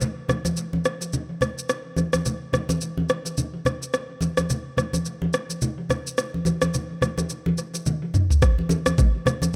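Afrobeats with a hypnotic, sultry, swung feel, this short cut pairs an up-front electronic afro-pop drum kit, with its knocking, overdriven kick, rim click, shaker and toms, against low-tuned, thick-skinned acoustic congas in a small room, both drenched in analog delay within an echo-heavy, lightly reverberant mix, and a drum fill at 7.9 seconds tips the groove into a new section at 8.4 seconds.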